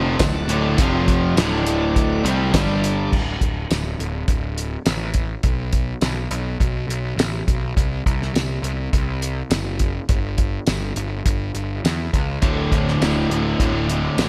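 A hollow-body overdriven guitar with spring reverb and a bright cranked stack guitar play a confident, driving classic rock riff through the opening 3.1 seconds and return at 12.4 seconds, over an up-front fuzz bass that runs throughout, a cloth-damped kit with a fat snare, tight kick, dark cymbals and tambourine that enters at 0.2 seconds, and a very quiet, shouting tonewheel organ with slow rotary and key click holding sustained chords at the start, all set in a big arena sound with lush hall reverb.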